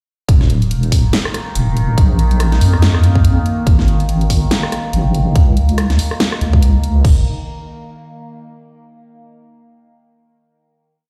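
Brooding and dark, this short deep dubstep piece drops in at 0.3 seconds with a half-time groove: a punchy, up-front electronic kick and a layered kit with a huge snare, rim clicks, closed and open hi-hats and crash, all re-recorded in a small room. Beneath it a deep, saturated wobble bass rolls through modulated phrases with changing wobble speed, while a resonant sawtooth drone with chorus, phaser and its own reverb sweeps its overtones through sustained chords. Everything plays through a big sound system in a bare stone room, before a final note rings from 7.0 seconds to the close.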